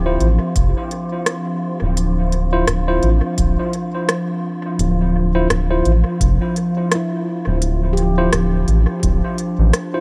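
A lightly reverberant ambient dub excerpt at 85 BPM in D minor with a swung sixteenth feel, meditative and deep, rests on a warbling, lo-fi, detuned pad holding a Dm9 chord with chorus, an up-front round analog bass, echoing stabs from a clean tine electric piano through a combo amp, an airy, breathy wind-like noise texture, smooth overdriven hi-hat and rim clicks from an electronic kit, a deep kick in the background, and a ringing stainless-steel handpan whose echoed arpeggios sound briefly at the start and return at 7.0 s.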